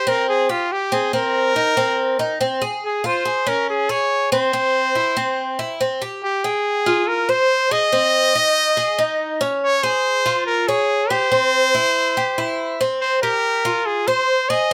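Lightly reverberant, this danceable, nostalgic Latin excerpt moves at 141 BPM in a straight 4/4, where a bright, pop-style solo trumpet sings the melody with light vibrato up front while an acoustic Cuban tres picks metallic, double-strung arpeggios with some octave-doubled strings throughout, the harmony cycling through Fsus2, Abadd9, Db and C before settling into F minor from 6.2 s over Fmadd9, Ab, Db and C.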